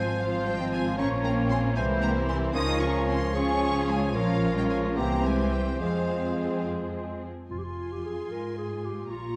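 A quick classical-period movement for symphony orchestra in F minor and 6/8, spirited and graceful with rubato at 70-78 BPM in dotted quarters, in which a lush, focused violin section carries the melody over a mellow clarinet, a smooth, distant second violin section, a warm cor anglais, an airy, hollow flute section and a roomy French horn section holding chords, while violas, a very quiet bassoon, expressive cellos with portamento and up-front double basses fill the lower parts, the horns, bassoon and cor anglais dropping out at 7.2 s, all set in a dark scoring-stage reverb.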